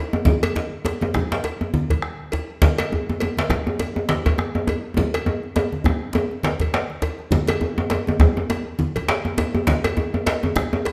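Driving and earthy, this West African traditional drum ensemble moves at 102 BPM in 4/4 with swung sixteenths, in a passage taken from a longer piece. A deep, compressed and saturated djembe played with soft hands sits up front, while a second, medium-tuned djembe, also soft-handed, stays close and dry in the background alongside a round bombo; ringing, low-tuned congas struck with hard hands and a metallic cowbell complete the ensemble. A moderate recital-hall reverb colours the whole recording, and a drum fill from 5.0 to 7.3 seconds leads into a new section at 7.3 seconds.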